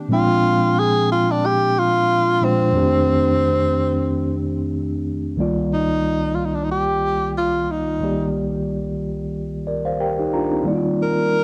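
A mellow tine electric piano opens this short, soulful R&B fragment, cut from a longer piece, and a breathy tenor saxophone joins it almost at once at 0.1 seconds. The tempo sits at an unhurried 91 BPM in 4/4 with a light sixteenth-note swing, and the key is C minor, giving the whole a sultry, late-night mood. The electric piano, clean and placed up front, spans a broad register and carries the harmony through lush extended chords such as Bb13, F13 and Cm11, before settling on Ebmaj7. Close-miked and equally forward, the tenor saxophone plays the melody in a jazz style with subtone, vibrato and a clear yet airy tone, its sound tinged by cassette tape. Around 9.3 seconds the electric piano steps out with a short fill, and the intimate small-room ambience and light reverb of this home cassette recording lend the performance a relaxed, personal feel.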